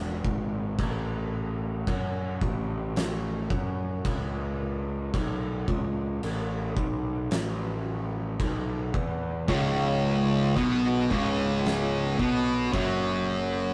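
A growly, overdriven fuzz bass opens this heavy, brooding stoner and doom metal excerpt at a crawling 55 BPM, joined almost at once by an oversized, low-tuned acoustic drum kit with a punchy kick, fat snare and dark crash cymbal in a pumping stone room, before a double-tracked, compressed fuzz guitar riff pushes up front at 9.5 seconds, all captured in a rough rehearsal-room sound with light reverb, warm saturation and highs rolled off above 10.8 kHz.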